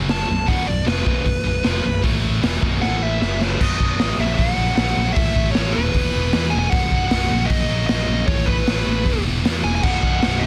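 Hard rock at 154 BPM in a straight 4/4, this brief excerpt from a longer piece struts with a swaggering, energetic drive in B mixolydian. A smooth, dark overdriven lead guitar with tape echo opens with a solo over the first 3.6 seconds, sitting high above a pair of bright, high-gain distorted rhythm guitars picking the riff. One of those rhythm guitars runs throughout, while a heavier one tucked in the background plays only until 3.6 seconds and returns briefly at 9.8 seconds. A punchy, amped fingered electric bass anchors the low end, and an up-front, gritty acoustic drum kit with a punchy kick, medium-tuned snare, hi-hat and crash rolls through a fill from 2.8 seconds into the second section. That section cycles through B, F#/A#, A5 and E5 chords, and the sound is dry and dense, squeezed into a heavily limited modern master.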